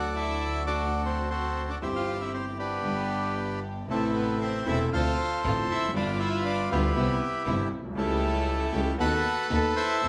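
A reedy, close-miked bandoneon carries the melody up front in this sultry, melancholic tango at 118 BPM with a rubato feel, settling into A minor at 3.9 s, while a bowed violin with vibrato and portamento sings a boxy second line in the background, a warm baby grand piano with short sustain accompanies, a soft-attack sul tasto string section adds pure, floating stabs, and a biting, intense bowed double bass holds the low end, the band playing live in one room under a large, wet studio reverb.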